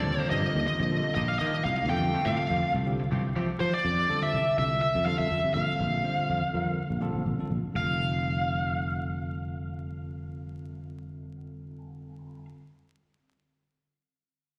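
Bright and soaring, this jazz excerpt floats on a straight 4/4 feel as a smooth, overdriven lead guitar carries the melody up front, picked over bell-like tine electric piano accompaniment and a growly, punchy fretless bass. For the first 3.8 seconds, a shimmering, retro pulse-width pad sustains very quietly alongside compressed, hollow-body stabs from a semi-hollow electric guitar with lush chorus, before both drop away. Slapback echo touches the lead guitar, electric piano and semi-hollow guitar, while the whole performance sounds like a live gig heard through the venue's PA, with recital hall reverb and vinyl crackle.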